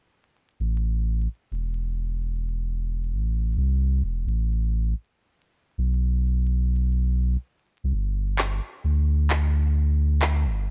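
A deep, round sub bass carries this ghostly, nocturnal future garage fragment, entering at 0.6 seconds and holding the foreground until 10.7 seconds with sustained, mellow sine tones that move between E1 and D2. Its notes begin with a fast attack and then sit low and full at the front of the mix. The music moves at 131 BPM in 4/4 with a 61% swing on the sixteenths, set in A minor. Layered electronic handclaps arrive late, at 8.4 seconds, sounding up front with a tape-like warmth and a touch of small-room ambience. The production is dark and dry, with a bed of vinyl crackle giving the fragment, cut from a longer piece, a dusty late-night character.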